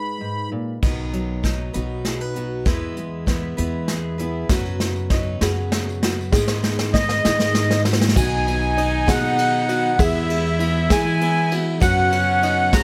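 Indie folk in 6/8 at 66 BPM, this anthemic passage in B major builds steadily and is cut from a longer piece. A dark, fingerpicked steel-string acoustic guitar opens the excerpt alongside the accordion, joined at 0.8 seconds by woody, thumpy pizzicato upright bass, a brushed drum kit sitting up front with a tight kick, and a bright, boxy picked guitar in the background whose fresh strings carry audible finger squeak. The build-up runs under a drum fill until 8.2 seconds, while a mellow tonewheel organ with slow rotary chorus and a plunky, twangy open-back banjo playing arpeggios enter at 4.5 seconds along with a very quiet, jingly tambourine. The accordion carries the melody up front with a reedy, sweet tone, light tremolo tuning and analog delay, returning at 6.9 seconds after a brief opening phrase. A clear French horn with light vibrato adds a classical-style second line in the closing section, as the chords cycle through G#m, B, E and F#sus4 in a studio ambience.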